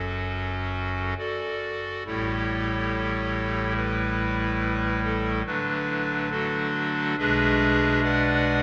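Bathed in a long, wet cathedral reverb, this solemn, dark, chorale-style classical fragment, cut from a longer piece, features a solo pipe organ on a hollow clarinet reed stop with romantic voicing and tremulant, sitting up front as it moves through F#m, A7, D and G#m7b5/B over its 8.6 seconds.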